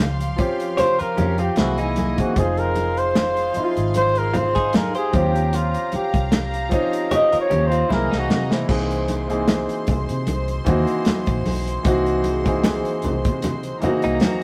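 Cinematic and bittersweet, this lush 1970s-style soul piece, cut from a longer work, moves at an unhurried 76 BPM in 4/4 with a gentle sixteenth-note swing. A breathy flugelhorn carries the melody up front in a jazz-style solo with light vibrato and scooped notes, stopping at 8.6 seconds just as a drum fill closes the opening section. Beneath it, a grand piano with deep bass plays the accompaniment while a distant, floating string section holds a soft-attack second line bowed sul tasto. A round, punchy, foam-muted electric bass anchors the harmony, and a dry soul drum kit with dark cymbals and a tight kick sits up front, joined by ringing congas in the background. A twangy, compressed clean guitar picks a bright riff from 0.8 seconds, and a very quiet vibraphone with soft mallets and slow motor vibrato adds a metallic shimmer. The rough rehearsal-room recording carries light reverb, and the harmony moves through rootless Eb13, altered C7 and Fm7 chords.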